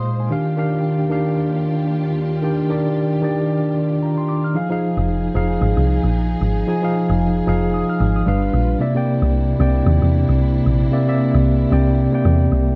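Soulful and hypnotic, this amapiano fragment is cut from a longer piece and sways in 4/4 with a loose sixteenth-note swing. A clean tine electric piano sits up front, heard as if through its built-in speakers, and carries the accompaniment over an opening Ebmaj9 chord. Beneath it, a dark studio string section holds lush, woody sustained chords, bowed sul tasto with vibrato and set well back in the mix. A drop lands at 4.6 seconds as the harmony moves to Fm7, and at 5.0 seconds a deep, round log drum bass arrives with a fast, percussive attack, an FM tone with a noise layer, and a forward, decaying thump. The electric piano and strings share a cassette-tape grain, and this home recording sits in a small, dry booth.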